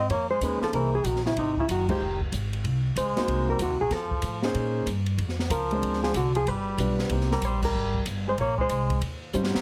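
A brisk swing at 188 BPM in 4/4 drives this short cut from a longer small-group jazz piece, its eighth notes lilting with a relaxed, sophisticated ease. A dark, clean hollow-body electric guitar carries the melody with a touch of plate reverb, while a trombone in a metal mute adds a buzzy, thin second line with a smooth top. A woody upright bass sits up front on steel strings, and an acoustic drum kit with dark cymbals, a high-tuned snare and a boomy kick keeps time from ride and hi-hat to crash. An intimate concert grand piano with audible action noise and deep bass comps from 0.4 seconds, drops out at 7.3 and returns briefly as the drums play a fill at 9.3. The band hits accents together over chords moving from Bbm11 through an altered dominant, dominant sevenths and half-diminished turns to an Eb13, all heard through a moderate small room and a heavily compressed, radio-style sound.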